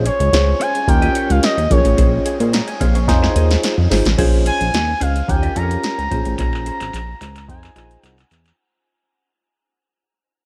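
Light reverb and digital ambience give this short cut from a longer early-eighties boogie funk track a slick, polished sheen, and it fades out from 4.2 seconds. The groove is danceable, at 109 BPM in a straight 4/4 in Bb minor, moving through a rootless Bbm9, Eb9 and Fm7. An up-front electro analog drum machine drives it with a deep kick, punchy snare, metallic hats, handclaps and crash cymbal, with a short room on the snare, clap and hats, and fills at 3.1 and 6.4 seconds. A chorused synth bass, glossy and nasal with a pulse-wave and sawtooth tone and a filter pluck, sits up front in the low register. A barky, bell-like tine electric piano, lightly overdriven through a combo amp with phaser, supplies the chords. Above them an expressive portamento lead, smooth and mellow with vibrato, chorus and a diffuse ambient delay, carries the melody, while a clean, compressed semi-hollow electric guitar picks a riff in the background through analog chorus.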